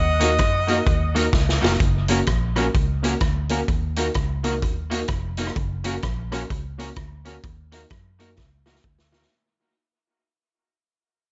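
Ska with a mischievous, energetic swing, this brief cut opens on a rich, earthy erhu phrase with light vibrato and portamento trailing into dub echo before it stops at 1.3 s, while a round, foam-muted electric bass sits up front, a twangy guitar at the edge of break-up and a boxy, woody upright piano add echoing accompaniment and stabs, and a gritty vintage drum kit with a tight kick drives through fills at 1.3 s and 8.4 s as the whole piece fades out from 1.8 s in a small room.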